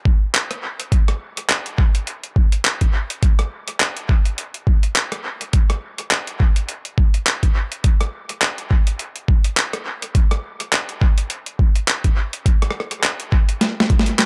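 A thumpy electronic kick drum hits up front in this swaggering, playful glitch hop groove with a swung 16th-note feel, joined by a gritty boom bap sampler-style kit of handclaps, hi-hat, rim click and medium-tuned snare, both parts overdriven and compressed, with the kit soaked in dub echo in a dry, echo-heavy mix that closes on a drum fill at 13.6 seconds.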